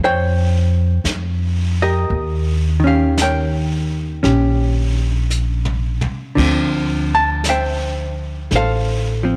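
A dark, clean hollow-body electric guitar and a woody pizzicato upright bass open this romantic, late-night jazz ballad together, both sitting up front in the mix. At a slow 56 BPM in 4/4 with a gentle swing on the eighth notes, the picked, compressed guitar comps through a Bbmadd9 that moves to Eb7, while the steel-strung bass anchors the low end. A vintage brush drum kit enters at 1.0 seconds, sitting further back, with brushes on a medium-tuned snare, dark cymbals, a tight kick and a rolled-off top end that keeps it soft and natural. The drums play a fill from 5.3 to 6.4 seconds, landing as the harmony settles on Dm9. Light reverb and a small room ambience give the short excerpt an intimate, late-evening glow.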